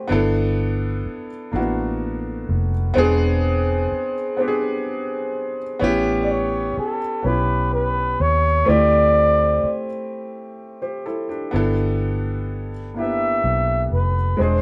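Recorded as a band playing live in one room with moderate studio reverb, this sensual R&B excerpt in 6/8 opens on an intimate concert grand piano, its action noise audible, over a round, foam-muted vintage electric bass, before a breathy, whispered flugelhorn takes the solo melody at 6.2 s, as the chords move from G69 through E7b13, A9 and D9sus4 to return to G69 at 11.5 s.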